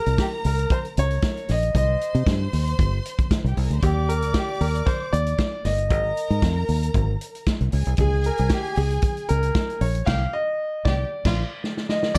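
A punchy fingered electric bass sits up front in this celebratory, glamorous disco excerpt, a straight 115 BPM groove in 4/4 tuned to A4 = 435 Hz. The bass has a foam-muted, direct tone, while the up-front grand piano carries the melody with a clear, intimate sound, its long sustain and audible action noise giving it a natural presence. A lush, bowed studio string section adds a second line behind it, rich with vibrato and heard close and focused. The acoustic vintage drum kit lays down kick, snare, hi-hat and crash with a medium-tuned snare, a rolled-off top and a small-room feel. The harmony moves from Bbm through Cm, Ebmaj7, Ab5 and Db5 before returning to Cm and Bb. The full band hits an accent at 10.1 seconds and the drums close the clip with a fill at 11.6 seconds, all set in a dark, warm production with light reverb and small room ambience.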